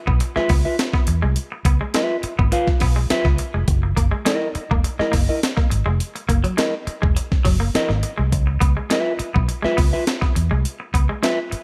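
Funk at 103 BPM in a straight 4/4, this energetic, strutting cut rides a Db7#9 to Gb13 to Db7#9 progression. A gritty, compressed breakbeat-style kit with a thumpy kick and high-tuned snare sits up front beside a round, punchy, foam-muted vintage fingered bass, while a bright, twangy picked electric guitar plays the riff. A dark, fingered electric guitar adds accompaniment through spring reverb from 0.4 seconds, all set in a digital ambience.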